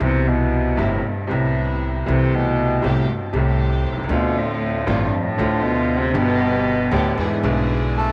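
A moderate echo chamber reverb gives this short tango excerpt a roomy, sultry air, with a tense undercurrent at 117 BPM in 4/4, played rubato in C major. A bowed cello carries a solo second line from the start, its nasal, gut-string tone in a period style sitting up front and trailed by tape echo. Beneath it, a brilliant upright piano plays the accompaniment, while a pizzicato upright bass on steel strings adds a woody low end. A studio string section places soft-attack stabs played sul tasto, adding a pure, floating, close layer. The harmony moves from Cmaj7 through Am7/C and Dm7 to G and E7. A dark, smooth, reedy bandoneon takes up the melody only at 8.0 seconds, just as the passage is cut off.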